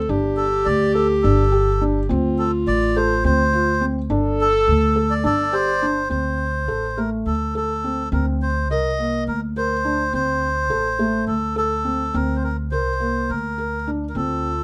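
A reedy, nasal melodica carries the melody up front in this hypnotic, urgent chamber piece in D minor. It moves in an uneven 7/8 at 209 eighth-note beats per minute with a straight feel. Beneath it, a felt-muted upright piano spins soft, intimate arpeggios with a mellow tone through its thick felt, while a woody, thumpy pizzicato upright bass anchors the low end. A dark, classical-style clarinet adds a second line during the opening stretch, falls away at 5.8 seconds, and returns briefly near the close at 14.2 seconds. The harmony moves from Gsus2 and Dm7 to starker D5 and Cm9 colors before ending on Bbadd9/C. A moderate studio reverb gives the ensemble a natural sense of space in this passage cut from a longer work.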